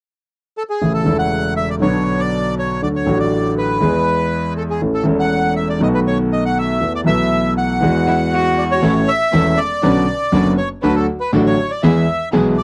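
A tango fragment taken from a longer piece, elegant and nostalgic, moving at 120 BPM in 4/4 with a rubato feel in A major. A reedy, bright bandoneon carries the melody up front, entering at 0.6 seconds, while a clear concert grand piano supplies the accompaniment, present and intimate, with audible action noise, deep bass and long sustain. A rich, bowed cello played by a single player slips in briefly as a second line around 8.1 seconds, expressive with vibrato and portamento. From 8.8 seconds a string section in the background adds stabs with a gut-string, period-style tone and light vibrato as the harmony moves through A, Bmadd9, D and E. The sound is a dry, close studio recording in a 1970s style, touched by light reverb.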